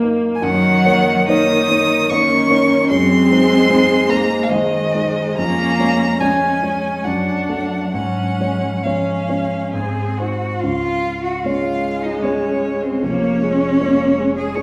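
In a rubato 3/4 pulse between 65 and 79 BPM, this tender, serene slow romantic movement for piano quartet unfolds in Db major, cut from a longer piece. A dark, mellow grand piano with audible action noise and a distant, focused viola accompany from the start, while an up-front violin carries a smooth, vibrato-laden melody from 0.3 s and a cello adds a second line. The quartet sits back in a reverberant recital hall, and the music moves into a new section at 10.6 s.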